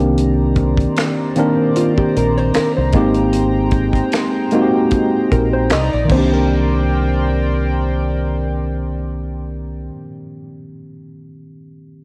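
R&B with a neo-soul lean, this soulful, smooth excerpt sits at 76 BPM in C minor with a lightly swung sixteenth feel, moving from Cm9 to Abmaj9 and back over a worn, slightly out-of-tune tine electric piano that stays up front for the full 12.0 seconds. A round, punchy fingered bass and a tight funk kit with a high-tuned snare, dark cymbals and finger snaps carry the groove, the drums dropping out at 6.3 seconds, while a hollow-body jazz guitar adds a clean, compressed second line between 1.8 and 6.7 seconds. Behind them a shimmering, retro pulse-width pad holds soft-attack chords with chorus, and the cassette-tape character and light reverb give the whole a homemade feel.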